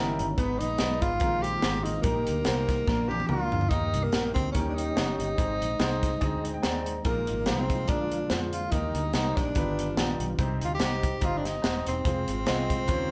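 Uptempo gospel in Eb major at 144 BPM, swung in 4/4, this hopeful, soulful excerpt is cut from a longer piece and captures a band playing live together in one room with a moderate large-studio reverb. A breathy tenor saxophone carries the melody up front, close-miked in a jazz style with a soft attack and scooped notes, staying between Bb3 and G4. A clear baby grand piano accompanies with an intimate, natural sound and audible action noise, opening with a short fill before settling in and adding another fill from 6.2 to 7.0 seconds. Beneath it, a mellow, flute-like tonewheel organ holds sustained chords in the background through a fast rotary speaker, with key click and vibrato. A round, foam-muted fingered electric bass anchors the low end, while a polished, airy fusion drum kit with a high-tuned snare and tight kick enters at 0.2 seconds and breaks into a fill around 2.9 seconds. The harmony moves from Abm through suspended and dominant chords back to Eb, then turns toward G7b13, Cm and Fm.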